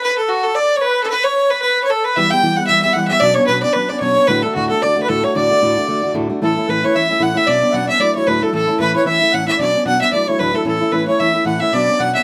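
A rich, earthy fiddle with light vibrato leads this bright, lively Celtic reel up front, with a reedy, dark accordion playing a smooth second line, and a full-bodied fingerpicked jumbo steel-string guitar joins at 2.2 s with audible finger squeak, the swung trio heard as a band playing live together in a small room with moderate reverb in this fragment of a longer piece.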